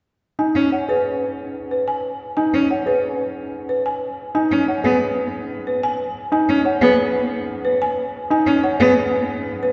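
A woody, rustic folk marimba played with medium hard mallets carries the melody from 0.4 s, set against a dark, mellow concert grand piano's arpeggios and a clear, focused bowed cello accompaniment with vibrato. This meditative, hypnotic excerpt of minimalist classical pattern music moves briskly at 182 BPM in 6/4 with a straight feel, resting on G# minor and tuned to A4 = 445 Hz. The sound is heard from further back in a cathedral with a long, wet reverb and a dulled top end.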